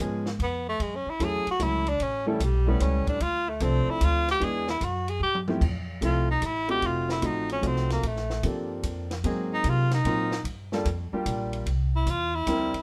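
A light reverb gives this short jazz cut from a longer piece an intimate, sophisticated glow, with the breathy tenor saxophone and the clear grand piano sitting up front. It's small-group swing and bop in a lilting three, where the saxophone carries the melody from 0.4 seconds with a soft attack, whispered tone, vibrato and scooped notes. Underneath, the vintage-sounding piano comps smoothly in its middle register while the pizzicato upright bass adds a woody, growly, thumpy low end from steel strings. The compact cocktail drum kit stays dry and natural, with a high-tuned snare and tight kick, and closes the opening passage with a fill at 5.2 seconds. From 5.6 seconds the harmony turns toward richer, shifting chords and the saxophone stretches out in a solo through to the end.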